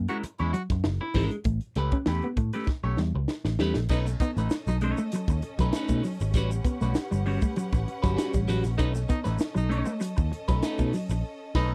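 A round, foam-muted picked electric bass sits up front in this strutting, energetic funk excerpt at 98 BPM, alongside a crisp fusion drum kit with a high-tuned snare and tight kick, a clean picked guitar riff, and a slightly broken-up, compressed second guitar coloured by phaser. A punchy, vintage-toned baritone saxophone plays a second line with vibrato, while a drum fill from 2.7 seconds leads into a section at 3.9 seconds where a lush, bowed string section adds bright sustained chords and a grainy tube shaker murmurs in the background. The dry, close 1970s-style studio sound moves through extended chords such as F#9, A13 and B9 before a band accent at 11.2 seconds.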